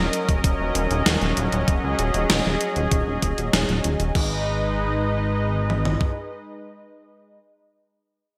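Synthwave at 97 BPM in G# minor, this cinematic, nocturnal fragment is cut from a longer piece and tuned slightly flat. A brassy, detuned sawtooth pad with a soft attack, filter swell and chorus holds sustained chords, moving from D#m7 to G#m at 4.2 seconds. Beneath it, a glossy, evolving synth bass blends pulse-width-modulated pulse and sawtooth tones with a filter sweep, tube saturation and sidechain pumping, and it stops at 6.0 seconds. An overdriven, sampler-style 80s drum machine sits up front with a thumpy kick, toms, hi-hat, crash cymbal and a gated-reverb snare, its sound re-recorded in a small room. A lush hall reverb and bright 1980s-style digital production give the short passage a nighttime sheen.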